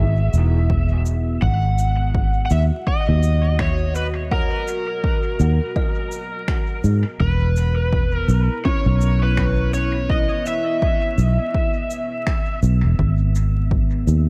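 A dry, echo-heavy mix dusted with vinyl crackle frames this hazy, meditative ambient dub fragment in G# minor, moving at 83 BPM in 4/4 with a swung sixteenth-note feel. An up-front, round, foam-muted fingered electric bass anchors the low end, while a punchy, overdriven electronic kick and faint, tape-softened cabasa and finger snaps, the latter trailing dub echo, give the groove its pulse. Underneath, a deep, moody pad of detuned sawtooth and sine layers with a sub octave swells in slowly and lingers, warbling through chorus and its own reverb. Over this, an overdriven slide guitar played with fingerpicks carries the melody through dub echo until about 12.6 seconds. A woody, hollow-sounding kalimba joins in the background at 4.3 seconds with ringing, echoed arpeggios, as the harmony drifts from E to G#m7 and Emaj7 before returning to G#m7 at 13.0 seconds.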